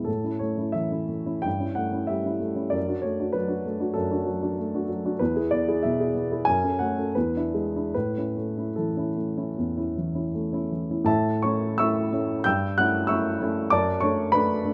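A woody, up-front upright piano opens the excerpt on an A major chord, playing a lyrical, warm romantic character piece in 4/4 with free rubato that moves between 73 and 100 BPM. Its harmony passes from A through A7/G and D/F# to E and F#m before settling back on A at 7.9 seconds, and a new section at 11.1 seconds brings back the A7/G and D/F# colours. Light reverb lends the piano a gentle sense of space across this short excerpt, its range reaching from E2 to G6.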